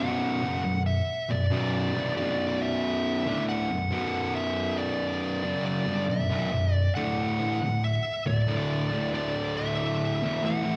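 Heavy and hypnotic, this slow metal excerpt at 69 BPM in B minor moves from Bm to D5 at 7.0 seconds. A bright, double-tracked fuzz guitar drives the low riff up front, while a dark fuzz lead guitar carries the melody with distortion, slapback echo and tape echo. Both guitars sound compressed, caught live through a venue's PA with recital-hall reverb and a light digital ambience.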